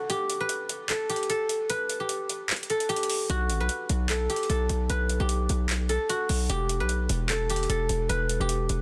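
A half-time trap groove at 150 BPM in G major carries this dreamy, wistful hip hop excerpt, with an electronic drum kit of handclaps and metallic hats entering at 0.1 seconds beneath a silvery, fingerpicked guzheng melody that rings through delay from the very start. After an opening break, a punchy, saturated 808-style bass drops in at 3.3 seconds with a heavy sine body, a noise layer and a fast, decaying attack, moving from a Gmaj9/A chord to E minor. The guzheng, drums and bass all sit up front in studio reverb, within a dense, heavily limited modern master.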